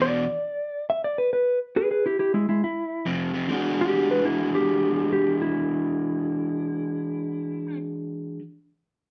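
Wet room reverb wraps a band playing live together in this gritty, soulful swung blues fragment, where a dark, compressed, clean lap steel, played with fingerpicks and slide, carries the melody up front through a stop-time opening before the overdriven, picked electric guitar riff, also up front, returns at 3.1 seconds and runs on to 8.4 seconds.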